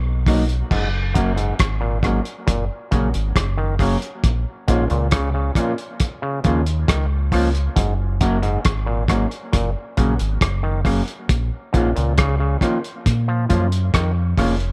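Warm and uplifting, this short roots reggae excerpt moves at an unhurried, straight 4/4 pace with an echo-heavy, dry mix. A deep, round dub bass, played with the fingers, sits up front with a punchy, dark tone from the very start, outlining a progression that opens on Bmaj7 before settling into an alternation of F# and A#m. The cloth-damped drum kit is muffled and thuddy, a lo-fi small-room sound with a tight kick, gritty saturation, dark cymbals and a rolled-off top, using crash, hi-hat, kick and rim click with tape echo trailing behind. A mellow, clean electric guitar adds dark accompaniment colored by a warbly pitch drift and dub echo. From 0.7 seconds an auto-wah clav spins stringy, percussive arpeggios, its overdriven tone pushed through a combo amp and shaped by an envelope filter.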